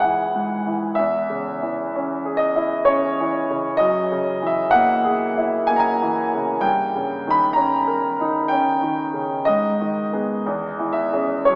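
Nostalgic and serene, this romantic nocturne for solo piano unfolds at 63 BPM in 3/4 with a rubato feel, in an excerpt cut from a longer piece. The clear concert grand, deep in the bass and up front in the sound, spans C#2 to B5 as its chords move from C#m through F#9 and D#7/G to G#m before settling back on C#m/E. A long cathedral reverb surrounds the piano with an open, lingering space, though the overall sound is that of a small speaker.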